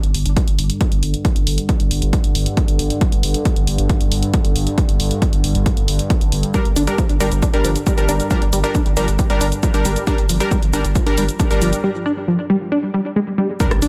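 Driving straight 4/4 at 136 BPM propels this hypnotic peak-time techno excerpt in G minor, where a punchy, up-front electronic kick and a tape-flavoured analog drum machine's hi-hat, rim click and shaker ride over a thick, saturated sine sub bass and a moody, detuned pad drone with chorus and built-in reverb, both pumping to the sidechain, until at 6.5 seconds a tight sequenced sawtooth riff with phaser and analog delay arrives alongside punchy unison supersaw stabs, and a very quiet impact with a faint, breathy pad lands at 13.6 seconds in an echo-heavy mix.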